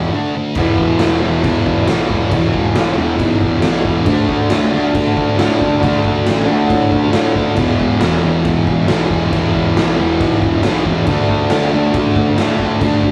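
This is a raw, rowdy garage rock cut for a small band at 137 BPM in a straight 4/4, taken from a longer piece. A thick, double-tracked fuzz guitar sits up front with a bright, distorted riff, built on D5 and E5 chords, that stretches from E2 to D4. Beneath it, a picked electric bass, heard both direct and amped, adds a round, overdriven fuzz with tube saturation between E1 and A2. At 0.6 s an acoustic garage kit enters with a punchy kick, a medium-tuned snare and crash cymbal, its dark, smooth tone with a rolled-off top set in a stony room sound. The whole take has the rough feel of a rehearsal-room recording, with a moderate booth ambience and a short decay that keep the rowdy energy close and immediate.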